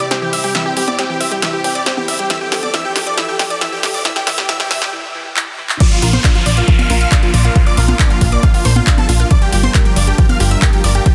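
A huge, euphoric supersaw lead carries the melody through this bittersweet, soaring uplifting trance excerpt, pumping against a punchy, dark analog bass, a round chorused pluck arpeggio, a very quiet bright unison pluck line, floating bowed strings in the background, a background riser and downlifter, and a layered dance kit of congas, handclaps, metallic hats, snare and crash whose fills drive the build-up until an up-front electronic kick lands with the drop at 5.8 seconds.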